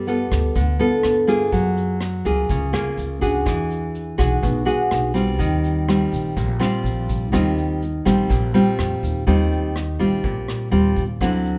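Up front, a full-bodied, fingerpicked classical nylon-string guitar carries this romantic, breezy bossa nova excerpt at 124 BPM in Eb major, moving through G9, Gbmaj9 and E9 before settling on Eb69. Beneath it, a woody, thumpy pizzicato upright bass and a vintage brush kit with a punchy kick, hi-hat and rim click keep a straight 4/4 feel, the kit sounding warm and rolled-off. A grainy, bright tube shaker sits in the background from 0.3 to 9.3 s, and a moderate recital hall reverb lends the ensemble a church-like spaciousness.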